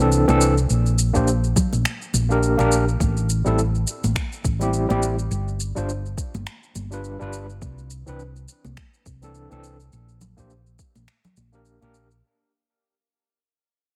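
Sunset chillout at 104 BPM in 4/4, this short clip from a longer piece has a warm, smooth mood and a loose sixteenth-note swing, with the whole passage fading across its 12.2 seconds. Up front, an overdriven tine electric piano carries the chords through a combo amp, its bright, barky, gritty tone shimmering with fast tremolo and tape echo as it moves through Cadd9, Bb6, Am7 and G7(no3). Beside it, a hollow-body short-scale electric bass, played with the fingers, sits up front with a dark, round, amped sound low in its register. Overdriven electronic shaker and finger snaps run throughout, while congas with an acoustic small-room character stay in the background from 0.3 seconds. A soft, overdriven electronic kick joins at 1.2 seconds and drops out at 10.9 seconds, and a light reverb gives the mix a gentle sense of space.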